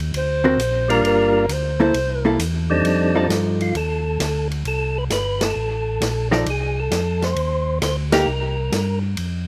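Dry and recorded outdoors, this short cut from a longer soul jazz organ trio piece swings greasily at 133 BPM in F mixolydian with a bluesy mood. A round, dark tonewheel organ carries the bass with chorus vibrato and slow rotary speaker, while a big-room acoustic drum kit with a medium-tuned snare swings on hi-hat and ride. A breathy, subtoned alto saxophone with scooped notes and slapback echo takes a brief, distant solo until 2.4 seconds, a clean, picked hollow-body electric guitar comps with its own slapback echo, and a second organ with key click and third harmonic percussion plays the melody from 0.9 seconds, with band accents at 5.3 and 8.0 seconds.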